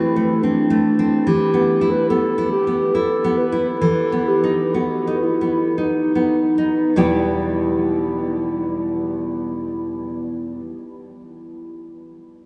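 A dark clarinet sings a solemn, yearning melody in E minor over fingerpicked nylon-string guitar with bright, fresh strings and audible finger squeak, the romantic duo moving in a rubato 3/4 between 48 and 80 BPM, slowing down until a new section arrives at 7.0 seconds, all steeped in a huge, echoing reverb that suggests a vast space in this short cut from a longer piece.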